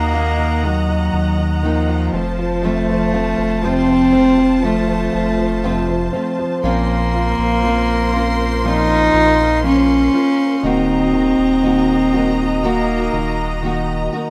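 Emotional and longing, this slow pop excerpt in Bb minor at 60 BPM sets an up-front, softly bowed cello melody, played sul tasto with a pure, floating tone, over lush vibrato strings, a clear, intimate grand piano with audible action noise, a fingerpicked nylon-string guitar in the background, and a thick, saturated sub bass, all in light reverb with a rough home-demo feel as the harmony moves from Ebm and F to Bbmadd9 at 6.6 seconds.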